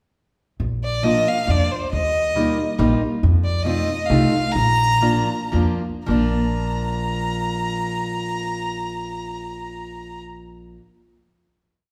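A clear, smooth violin leads this brief musette waltz in Bb major, its bowed, vibrato-rich melody sitting up front and built from short motifs shaped into sentence-like phrases. The mood is nostalgic and whirling, with a rubato feel in 3/4 that moves between 105 and 140 BPM and slows from 3.2 to 6.1 seconds before settling onto a final chord at 6.1 seconds. A picked acoustic archtop guitar, boxy and up front, supplies backbeat chords in close voicing. Beneath them, a pizzicato upright bass with gut strings gives a woody, thumpy pulse, playing root and fifth on the main beats from 0.6 seconds. The chords pass from Bb through Ebadd9 and F7 back to Bb, and the trio rings in a reverberant recital hall that lends the whole piece the air of a church or concert space.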